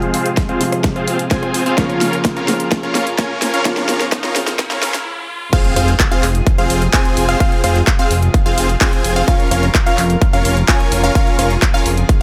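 This excerpt of powerful, euphoric festival progressive house opens with several parts at once. A warm piano plays short-sustain accompaniment with sidechain pumping and delay, while a very quiet, airy unison pad holds chords and bright, detuned supersaw chords play a riff through a low-pass filter sweep. An overdriven dance kit with a huge snare, handclaps, hi-hat, rim click and crash drives a drum fill, joined by a punchy, up-front electronic kick just after the start, and a faint riser builds the tension. The build-up halts in a brief stop before the drop lands at 5.5 seconds with an impact, bringing in a lush, wave-folded unison pluck playing arpeggios in the background. A fat, thick analog bass pumps underneath from 5.8 seconds as the harmony moves between F minor and B-flat minor over F. Light reverb gives the mix a touch of space.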